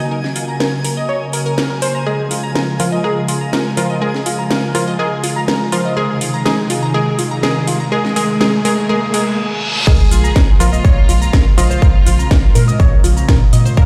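A straight 4/4 pulse at 123 BPM drives this dreamy, driving progressive house excerpt in Bb minor, where a lush, detuned unison pluck carries the melody over an airy, breathy pad and a second pluck spinning dub-echoed arpeggios, with a twinkling granular shimmer in the background until 9.4 s and a house kit of cracking snare, metallic hats, shaker and crash, its hats, shaker and crash pumping to the sidechain. The build-up moves through Gb, Db and Ab under a filter sweep on the pad, very quiet risers and a reverse cymbal. At 9.9 s it drops onto Bbm7 as an overdriven, punchy kick, a round, deep analog bass and a distant, smooth chamber violin section arrive, all set in a lush hall reverb heard through a bare stone room.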